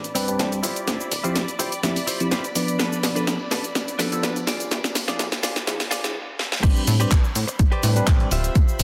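Nostalgic and sensual, this filtered disco house passage at 125 BPM in A minor builds over Am11, Dm11, Bm7b5 and E7b9 harmonies under a filter sweep with lush, chorused string-machine chords in the background, a punchy, funky analog bass pluck, a bell-like electric piano with phaser and sampler grit, a clean, direct-recorded electric guitar riff that adds a fill from 1.4 to 2.8 seconds, a very quiet tambourine and a layered house drum kit with a cracking snare and pumping hats, until an overdriven, dry electronic kick enters up front for the drop at 6.6 seconds, which returns to Am11 before moving to Dm11.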